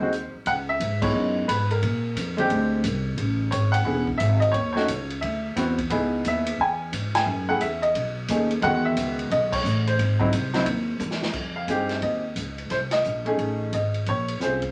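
Piano and upright bass open this moody, late-night jazz piano trio excerpt together, with the drum kit joining a moment later at a brisk 176 BPM in 4/4 with a swing feel. The clear baby grand carries the melody up front with a natural, short-sustained tone, moving through minor-key harmony built on rich seventh, ninth and thirteenth chords. Beneath it, the pizzicato upright bass sits equally forward, woody and growly with a thumpy low end. The drum kit sounds acoustic and natural, with a punchy kick, a medium-tuned snare, hi-hat, ride, crash and toms set further back in the mix. The trio hits several accents together, and a drum fill from 11.0 seconds ushers in a new section at 11.3 seconds, where the key shifts from C# minor to F minor. A wet small-room reverb gives the whole performance a close, intimate ambience.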